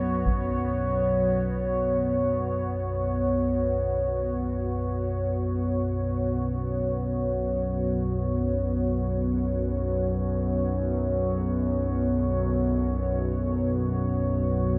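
In free time, this desolate, unsettling dark ambient drone fragment, cut from a longer piece, sets a deep, moody pad holding a sustained Bsus2 chord against an evolving, detuned, wave-folded analog drone, both up front with chorus, while a barely audible quartz singing bowl rings pure and meditative beneath, a close, dry taiko ensemble played with heavy sticks sounds briefly from 0.3 to 0.5 seconds through a low-pass filter, and a wet plate reverb soaks the whole mix in a dreamy haze.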